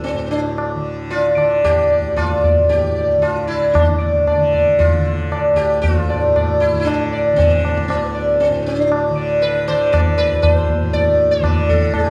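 A plectrum-plucked sitar with buzzing sympathetic strings carries the melody in raga Bhimpalasi on D from the very start, heard up front over a bright, softly plucked tanpura drone and high-tuned tabla with a short ring, all three sounding together across this 12.1-second excerpt of Hindustani classical music. The mood is introspective and meditative, set in straight 4/4 at 116 BPM, and the pace gradually speeds up as the opening passage gives way to a new section at 3.8 seconds. A moderate recital-hall reverb surrounds the acoustic instruments, and the tabla sounds somewhat distant in a large room.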